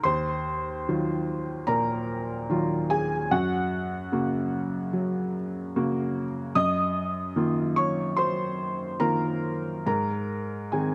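A felt-muted upright piano plays alone from the first moment, its soft, mellow, intimate tone sitting up front with a slapback echo as it spans Eb2 to Eb6 in this reflective, wistful piece of neoclassical minimalist piano. At a rubato 73 BPM in 4/4 and Eb dorian, tuned to A4 = 438 Hz, the harmony moves from Ebmadd9 to Gb, then Ebmadd9/Gb, arriving on Ab at 9.9 seconds. Recorded outdoors with barely any reverb, this short passage, cut from a longer piece, has a dry, vintage character.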